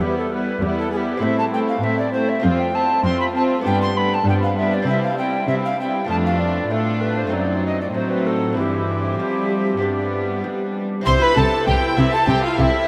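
Festive and lively, this baroque-style concerto movement in C major moves at 98 BPM, with an airy, chiffy alto recorder carrying the melody up front over gut-string violin sections on the melody and second line, a dark, distant viola section, a delicate fingerpicked lute in the background, and a smooth-topped cello section on the bass, joined by a double bass section from 11.1 seconds, all bathed in a huge, echoing reverb.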